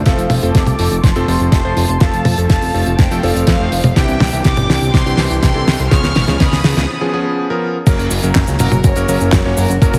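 A straight 4/4 groove at 123 BPM drives this playful, sunny italo disco fragment, with a thumpy, overdriven electronic kick under a dry, damped 70s kit of fat snare, dark cymbals, hi-hat, handclaps, cabasa and toms. A thick, detuned sawtooth analog bass and clangy vintage electric grand piano stabs sit beneath an intimate chamber violin section, bowed sul tasto with light vibrato, that carries the melody through a low-pass filter and delay. A filter sweep on the violins runs through a break at 6.9 s until 7.9 s, while the chords move from F through Cadd9 and Db7 to F# at 7.9 s. It is all set in a lush hall with a heavily compressed radio sound.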